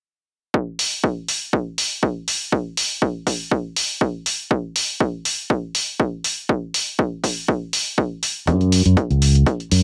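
A punchy analog kick drum opens this sunny, funky filtered disco house fragment at 0.5 s, high-passed and carrying cassette-tape coloring, with an up-front electronic hi-hat joining at 0.8 s and pumping to a sidechain at 121 BPM with a 54% sixteenth-note swing. A direct, amped fingered electric bass arrives late at 8.5 s, moving between C#2 and F#2 through a low-pass filter and its own sidechain pumping. Cut from a longer piece, it has a dry, close sound from a home cassette recording, with the drums given a tape-warm character.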